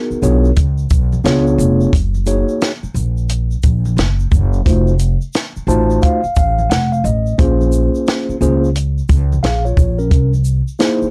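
A mellow tine electric piano, clean and heard through its built-in speakers, carries this nocturnal, hip hop-leaning jazz-hop excerpt at 88 BPM in swung 4/4, moving through Abm9, Db7b9, Gb6, F7b9, Bbm9 and C7alt with a fill from 5.3 to 7.4 seconds, over a woody, growly pizzicato upright bass, an up-front compact cocktail drum kit with a high-tuned snare and tight kick, and a very quiet tube shaker and congas, captured on dry, gritty cassette tape.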